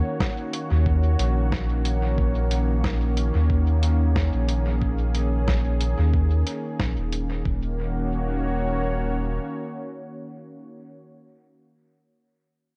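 Hazy and spacious, this ambient dub fragment, cut from a longer piece, drifts over a swung 4/4 pulse and a single Ebm7 chord. A warm analog pad opens the recording with smooth, detuned sawtooth chords that warble with subtle chorus and hold long past the rest, sounding until 10.8 seconds. An electronic kick drum and a lo-fi sampler-style kit of hi-hat and medium-tuned snare arrive at 0.2 seconds, both pitched down, muffled and tape-warm, with dub echo trailing the kit's hits. A deep, round sub bass of triangle and square waves sits up front with a fast attack, carrying a filter sweep through the opening stretch before the arrangement shifts into a second section. The echo-heavy digital ambience wraps the parts in a roomy, drifting haze.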